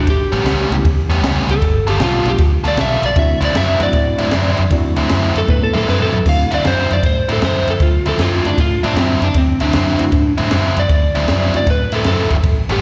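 A slide guitar solo opens this rollicking, soulful electric blues shuffle at 155 BPM, its slightly broken-up tone played with fingerpicks and carrying the melody across the full clip, cut from a longer performance. A vintage foam-muted fingered bass, round and punchy, sounds from the start beside a compact cocktail drum kit whose high-tuned snare, punchy kick and rolled-off top give the groove a smooth, dark weight, with crash, ride and toms in the mix and a drum fill from 5.5 to 6.3 seconds. A biting overdriven guitar plays a picked riff with slapback echo, while a bright, reedy electric piano comforts the harmony through its built-in speakers, adding harmonic tremolo and slapback echo from 0.7 seconds. The swung eighths sit in D mixolydian, moving through A9, G9 and D9 chords across two matching passages that split at 6.3 seconds. The whole performance has the feel of a live gig heard through the venue's PA, with recital hall reverb and a light studio ambience around it.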